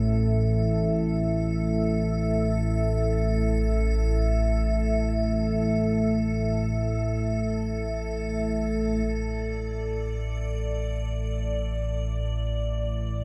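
A warbling, detuned analog drone sits up front in this ominous, desolate dark ambient fragment, while a deep, moody pad holds sustained chords on an A5 harmony and an icy, crystalline glass pad adds airy texture above, both pads bathed in chorus and shimmer reverb, all within a cavernous cathedral reverb before a new section arrives at 9.1 seconds.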